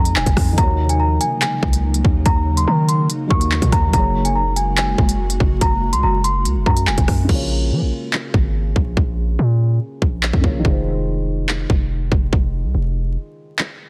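A half-time drill groove from an up-front, hard-clipped kick, crisp hi-hats, handclaps, rim clicks and crash cymbal drives this tense, cold hip hop cut from a longer piece, anchored by a punchy, heavy 808-style bass with a fast attack and decaying tail. A delicate, bell-like celesta carries the sweet melody over an ethereal, detuned pad with ensemble chorus and its own reverb, while a dark, felt-muted upright piano with audible action noise plays low-passed accompaniment. At 7.3 seconds the celesta and pad drop out for a break in which the piano takes a filter sweep, and the dense, heavily limited master, dry apart from the pad, carries a layer of vinyl crackle.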